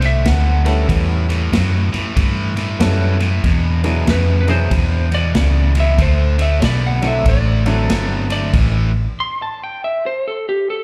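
A swung shuffle at 94 BPM in 4/4 drives this soulful, swaggering electric blues fragment, cut from a longer performance and heard as a live club gig through the venue's PA with small-room ambience and club reverb. A swinging big-band drum kit sets the groove with ride, crash, a medium-tuned snare and a punchy kick, its sound airy and polished, while a vintage fingered electric bass sits up front, dark, round and foam-muted. A cranked stack guitar plays a bright, overdriven picked riff with slapback echo, and a clear grand piano adds intimate accompaniment from 0.7 seconds, its natural tone carrying audible action noise. Over the top, a lightly driven lead guitar sings the melody with a dark, slightly broken-up, compressed picked sound and its own slapback echo. The band moves through D7, A7, E7 and back to D7 before landing on A5 at a stop at 8.5 seconds, and the lead guitar carries on to the close at 10.8 seconds.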